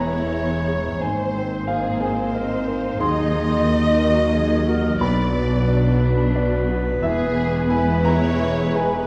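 A slow, rubato cinematic passage in 6/8 at 60 BPM opens with every part together, as a dark, woody violin section carries the melody in the background while a distant, roomy clarinet and a lush, soft-attacked violin section trace second lines over a vintage-toned grand piano and an expressive viola section, all grounded by a distant cello section and a rich, even chamber double bass section, the chords moving from E through Abadd9, Ebm and Bm back to E in a wet scoring-stage reverb heard from further back, with a bittersweet, longing mood across the 9.1 seconds cut from a longer piece.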